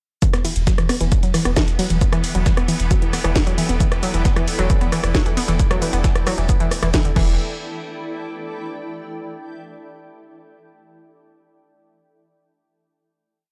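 A punchy four-on-the-floor kick drives this relentless, industrial peak-time techno piece, joined by metallic hats, a cracking snare and a very quiet, gritty looped breakbeat. A low sub-bass rumble sits between the kicks while a warbling, lo-fi sawtooth pluck repeats a 5-step loop that drifts against the bar. A tense, swarming drone and a blurred granular cloud pad pump with the kick, and the pad lingers alone on the final chord until 9.1 seconds.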